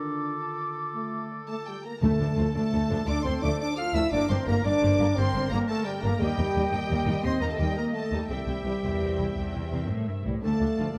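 Oboe, flute, clarinet, harp and up-front mellow French horns open this determined, swashbuckling heroic adventure cue in D minor at 114 BPM in a straight 12/8, before lush, intense violins take the melody at 1.5 seconds over rich violas, cellos and double basses, close timpani at 2.0 seconds and soft-attack trombones, all set in a moderate scoring-stage reverb as the harmony moves from Dm through Gm, Eb and C back to Dm.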